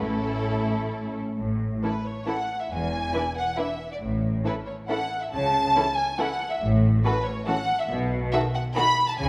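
A quick, lively classical-period movement for string orchestra in A major, moving at 138 BPM in a straight 3/4 and cut from a longer piece. An up-front, lush first violin section carries the spirited melody over a focused second violin line and warm viola accompaniment, while a distant, smooth cello section and an expressive double bass section anchor the bass, all bowed with vibrato. A moderate scoring-stage reverb surrounds the ensemble as the harmony moves from A through E7 and F#m7/A to a closing B7, with the second violins and violas stopping at 8.8 seconds just before the others finish at 9.3 seconds.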